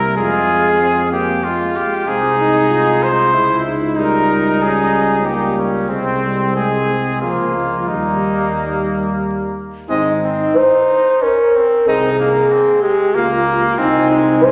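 A wet concert-hall reverb with a 1.9-second decay surrounds this brass quintet, and a vinyl crackle sits over the whole excerpt, which is cut from a longer piece. The music is stately and triumphant classical writing in Ab major, in 3/4 at about 93 BPM with a rubato feel. Up front, a warm trumpet with light vibrato and a soft attack carries the melody, while a clear second trumpet with vibrato sings a supporting line beneath it. A vintage-toned French horn joins at 0.2 seconds as accompaniment, the most prominent voice in the blend, while a mellow trombone, close-miked yet placed in the background, fills the middle and a soft-attacked bass trombone anchors the low end. The opening phrase moves from Fm through a Dbmmaj7 and Eb7/Db toward Eb, and at 9.9 seconds a new section settles onto Ab before closing on Ab/C.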